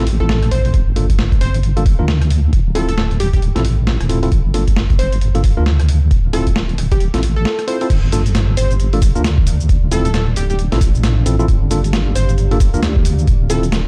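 A deep, wobbling sawtooth bass with chorus sits up front through this soulful, skippy two-step UK garage cut in G minor at 134 BPM, paired with a gritty, thumpy pitched-down kick and a sampler-style kit whose high-tuned snare, rim click, hi-hat, cabasa and crash all sound re-recorded in a large room. A clean tine electric piano through a combo amp plays stabs with medium tremolo and dub echo, while a punchy, catchy unison lead with a filter sweep carries the melody over Gm and Dm7 changes. At the drop at 7.9 seconds, a moody ambient pad with slow attack, chorus and sidechain pumping enters in the background at 8.5 seconds, adding to the dark, warm production.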